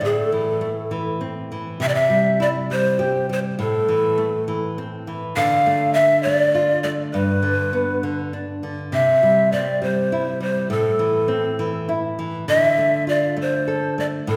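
Festive yet wistful, this Andean folk piece in A minor moves at 67 BPM in a straight 6/8, cut from a longer work, with breathy large cane pan pipes carrying an expressive, tongued melody full of vibrato and chiff over a bright, fingerpicked nylon-string guitar whose finger squeaks sit up front as the chords cycle through Am, C, Dm and G, the pair ringing in the lingering reverb of a recital hall.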